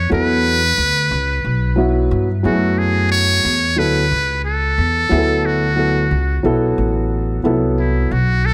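A metal-muted trumpet, buzzy and breathy with light vibrato and analog delay, carries the melody over woody pizzicato upright bass from the start of this cool, smoky jazz-hop cut at 90 BPM with a swung feel, as a dark, mellow grand piano with audible action noise joins at 0.1 seconds to move through E9sus4, F#m7 and Dadd9 in an intimate small room with light reverb and a faint mains hum.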